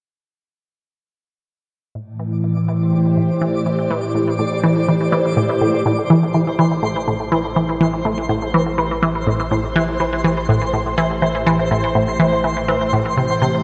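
A steady, straight 4/4 pulse drives this mysterious, hypnotic stretch of ambient, sequencer-driven space music, cut from a longer piece and held on a single Am7 chord. At 2.0 seconds a resonant blip pluck enters up front with a juicy, squelchy riff in its low register, its detuned sawtooth tone edged with ring modulation and carried by phaser and delay as it fades in. Almost at once a phased string machine adds swirling, vintage sustained chords with a warbling moving notch, its filter sweeping while a twinkling granular texture fades in high above with sparkling, octave-up shimmer. From 5.9 seconds the string machine fades in further and a round, deep sub bass rises softly underneath on a single low note. The whole mix sits in a vast, echoing cathedral space that lets every sound hang in the air.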